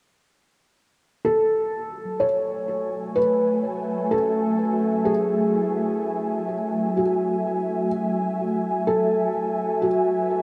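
Melancholic, spacious ambient in F# minor at a slow 63 BPM, this cut from a longer piece opens at 1.2 seconds with a boxy, thick-felt upright piano melody, up front and delayed, its action noise audible, before very quiet, ring-modulated synth-key arpeggios enter at 2.1 seconds and an ethereal, detuned pad with ensemble chorus and its own reverb lays sustained chords from 2.6 seconds over a lingering F#m7, all set in a vast, echoing space with a cassette tape tint.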